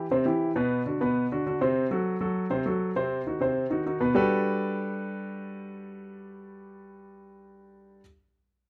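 Jazz in G major at a brisk 200 BPM, this lively, sophisticated cut from a longer piece features a solo grand piano playing from 0.0 to 8.0 s, moving through C, Bm, F#dim/C and Cdim before settling on Gmaj9 at 4.1 s. The piano sits up front with an intimate, natural tone and audible action noise, ranging from B2 to C5. Light reverb and a faint mains hum give the sound the feel of a band playing live in one room.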